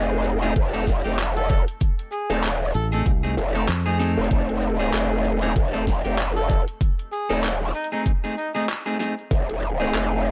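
Dark, clean guitar stabs and a growling, wobbling, chorused bass open this playful, swaggering glitch hop fragment at 96 BPM on an F7#9 chord, soon joined by grainy maracas, an overdriven pop kit with a fat snare and handclaps, and a knocking electronic kick placed up front. From 1.4 seconds an amplified, overdriven harmonica takes a jazz-style solo full of tongue slaps and scooped notes, echoed by analog delay, while the guitar stabs pump with sidechain compression. A round, punchy fingered electric bass briefly appears at 2.7 seconds, all within a dry, gritty recording with little reverb.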